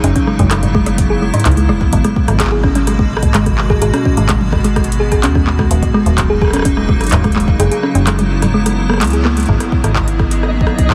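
An icy, crystalline glass pad with chorus and reverb, round tine-like synth pluck arpeggios through chorus and delay, a metallic FM bass with tube saturation and a booming analog drum machine of handclaps, metallic hi-hats, rim clicks and toms open this eerie, intricate IDM piece in G# minor at 127 BPM, joined at once by a deep electronic kick in the background that drops out at 7.6 seconds and returns at 9.5 seconds as the pluck stops, before a twinkling granular shimmer enters at 9.9 seconds, all heard through a heavily compressed, radio-like sound with light reverb.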